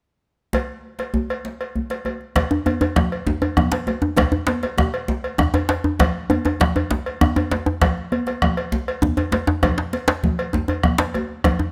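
A medium-tuned djembe played with soft hands sits dry and up front in this festive, powerful West African drum ensemble excerpt in 12/8, joining at 2.5 seconds just after a round, compressed and saturated bombo and high-tuned, thick-skinned congas struck with hard hands enter at 2.4 seconds, while a metallic cowbell and a deep, hard-hand djembe in a small room open the passage from 0.5 seconds before the fuller second section arrives at 2.4 seconds, all under light reverb and detailed close microphones.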